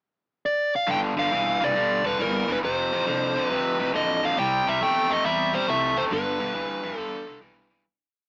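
A swung shuffle at 138 BPM in 4/4 drives this short, complete electric blues piece, which carries a swaggering, laid-back mood. A dark, smooth overdriven lead guitar opens at 0.5 seconds with a brief pickup, then sits up front, stating a motif-based melody built from call phrases. At 0.9 seconds, a bright, compressed overdriven electric guitar enters with a picked boogie riff on root, fifth and sixth, joined by a woody pizzicato upright bass with steel strings, playing a boogie figure low beneath it. The head moves through G7, F, C and G, with the band heard playing live together in one room through moderate studio reverb and a small-speaker sound. A fade-out begins at 6.1 seconds and carries the piece to its close.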